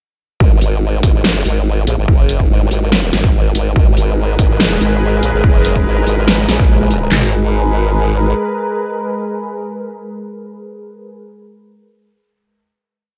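Opening at 0.4 s on a G# minor add9 chord, this heavy, menacing wobble dubstep piece at 143 BPM in a half-time feel drops straight in with an overdriven, chorused formant-sweep bass of bright pulse and sine tones whose wobble speed keeps changing, a punchy dubstep kit of kick, deep snare, floor tom and claps, and a big-room dance kit adding a huge snare and metallic closed hats, before a lush, airy pad of detuned sawtooth layers with phaser and sidechain pumping arrives at 3.8 s and carries the final chord from 7.1 s to the close, in light reverb.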